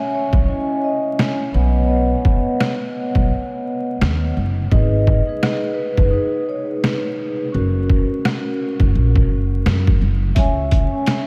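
Two vibraphones open the recording at 0.0 seconds. One is played with soft mallets, mellow and up front with a slow motor vibrato and a cassette-tape tint, carrying the accompaniment. The other, struck with medium mallets, sits in the background with a close-miked, full, ringing tone and an analog delay on the melody. At 0.3 seconds a pitched-down, gritty sampler-style kit arrives with a thumpy kick, rim click, hi-hat and a medium-tuned snare, compressed with 12-bit grit. A woody pizzicato upright bass on gut strings comes in with it and runs until 10.8 seconds. This dark, tough boom-bap hip-hop moves at 85 BPM in 4/4 with a swung sixteenth feel, passing through C#madd9, Badd9, G#m and F# in C# dorian. The whole mix is dreamy, soaked in a moderate cathedral reverb and dusted with vinyl crackle, and it is cut from a longer piece.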